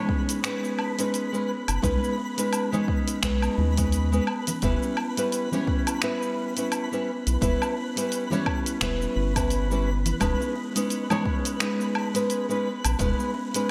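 A fingerpicked, up-front nylon-string guitar and a twinkling granular shimmer open this sunny, smooth sunset chillout excerpt in B major at 86 BPM with a swung 16th feel, soon joined by an overdriven, deep electronic kick, a buzzing, woody kalimba playing delayed arpeggios, and a gritty deep house kit of finger snaps, hi-hat, shaker and woodblock, before a round, dark analog bass and very quiet, softly played vintage congas arrive at 1.7 and 1.8 seconds, all moving through B69, Em6 and B69/D# within a bright 1980s-style digital production bathed in a moderate plate reverb.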